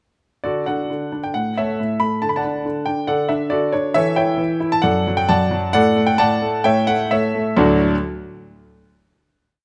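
A clear concert grand piano carries this short, complete classical-period sonatina alone, playing a tune with chords under it and broken octaves. The mood is graceful and elegant, in D major and 4/4, moving at 123-139 BPM with a rubato feel that lets the phrases breathe. The piano enters at 0.4 seconds and spans D2 to B5, its deep bass and short sustain giving the lines a crisp, natural shape. The harmony moves between D and A, passing through an inverted A7 and D chord before the piece settles on a final D chord at 7.6 seconds. Close, detailed microphones place the instrument up front, while a moderate recital hall reverb adds a gentle sense of space around it.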